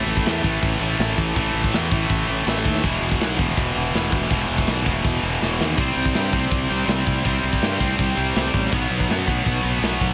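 Dark and relentless, this short heavy metal excerpt in E minor charges along at 163 BPM in a straight 4/4, with three bright, picked electric guitars (one overdriven and double-tracked, one high-gain, one tightly distorted) sitting in the background, each playing a riff over a growly, punchy fuzz bass. An up-front acoustic drum kit with bright cymbals, a medium-tuned snare and a tight kick drives the piece from 0.1 seconds, breaking into a fill at 5.4 seconds as the power chords move from A5 through E5 and C5 to B5. A big studio room sound surrounds the kit.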